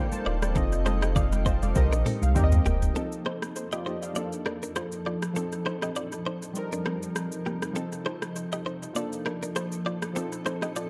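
Afrobeats with a breezy, joyful swing, this echo-heavy excerpt rides on an up-front, overdriven electronic drum kit with deep kick, hi-hat, rim click, shaker and toms, round detuned analog keys with chorus and tape echo, a bright, twangy clean electric guitar riff, and a cloudy, evolving granular pad, while close, thin-skinned congas and a deep sine sub bass drop out at 2.9 seconds during a keys fill and drum fill.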